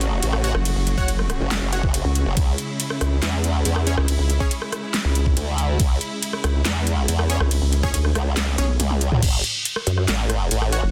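A menacing, chaotic heavy wobble dubstep drop in half-time at 140 BPM in F# minor opens on a lush, vibrato-laden bowed string section pumping under sidechain and a low-pass filter, a detuned sawtooth formant-sweep wobble bass with chorus and overdrive, and an up-front dubstep kit of huge snare and metallic hats, soon joined by punchy, bright supersaw stabs through digital delay, a dark, nasal vowel-sweep wobble bass that is the loudest part, and a knocking electronic kick that drops out at 8.4 seconds ahead of a drum fill, while the chords move from F#m to C#m and back to F#m at 9.2 seconds under light reverb and a dense, heavily limited master.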